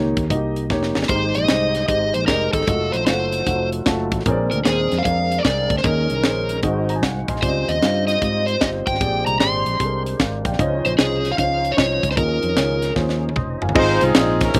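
Hopeful and reverent, this uptempo gospel excerpt swings at 152 BPM in Ab major, with rich extended chords such as Dbmaj9#11 and Bb13 colouring the harmony. A dark, mellow grand piano with audible action noise and a slapback echo opens alongside a round, punchy fingered electric bass, and a tight funk drum kit with a high-tuned snare joins at 0.2 seconds, sitting up front and filling into the main passage. At 1.1 seconds an overdriven slide guitar takes the melody, its gritty, up-front voice carrying a slapback echo, while a fat tonewheel organ holds sustained chords in the background through a slow rotary speaker, its key click audible. Piano and organ add fills together around the middle, and the piano fills again shortly after, before the guitar falls away at 12.9 seconds. A smooth-topped horn section with light vibrato enters at 13.8 seconds for a brief jazz-style phrase over an Ab6 chord. 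The sound is dry, with little reverb and an intimate, open-air feel.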